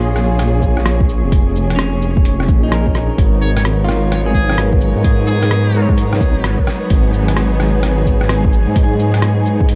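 An echo-heavy future garage excerpt at 129 BPM in G# dorian, ghostly and melancholic with a swung 16th feel, opens on clean picked electric guitar through analog delay, lush bowed strings with 12-bit sampler grit, and an up-front, rumbling detuned saw bass, all pumping under the sidechain, as a glassy chorused harmonics texture drifts in the background and muffled, pitched-down sampler drums of cabasa, hi-hat and rim click join a deep, tape-warm electronic kick, while a buzzy, distant muted trumpet with scooped notes and tape echo sings a brief jazz-style line from 3.4 to 5.9 seconds over A#m7 moving to G#m9.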